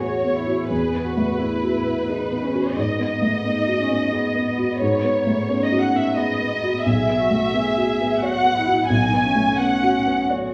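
A felt-muted upright piano, a muted violin section and a muted cello begin together, setting a tender, intimate neoclassical mood in E major. The music moves in a rubato 3/4 at around 88 BPM, passing through Eadd9, G#m7 and Bsus2. Sitting up front, the violins carry the melody con sordino, their bowed tone dark and veiled, with vibrato and a close, ensemble sound. Beneath them a single cellist plays a second line, also muted and dark, colored with vibrato and portamento. The piano supplies the accompaniment with a soft, mellow tone and audible action noise from the instrument. A recital hall reverb with a 1.5 s decay surrounds the players, and this brief cut from a longer piece ends at 10.5 s.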